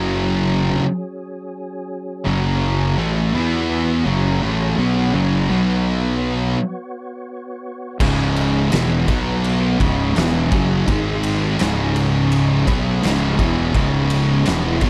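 A bright, double-tracked high-gain guitar riff runs through this ominous, brooding stoner and doom metal excerpt at 84 BPM in C# minor, joined by two thick fuzz guitars sitting in the background, a growly, punchy fuzz bass, and a very quiet tonewheel organ holding sustained chords through a slow rotary speaker with key click. At 8.0 seconds an oversized, low-tuned drum kit with a fat snare, punchy kick and dark cymbals enters with a pumping big-room sound as the other parts carry on, while the mix overall stays dry with little reverb.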